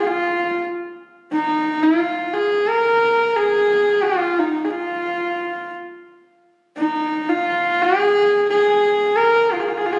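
Mongolian traditional music at a straight 88 BPM in 4/4, windswept and vast, in which a single horsehead fiddle carries the melody from start to finish in F yu mode with an earthy, husky, up-front bowed tone, a smooth top, portamento between notes, and the compressed, roomy sound of a phone recording steeped in moderate stage and club reverb, cut from a longer piece.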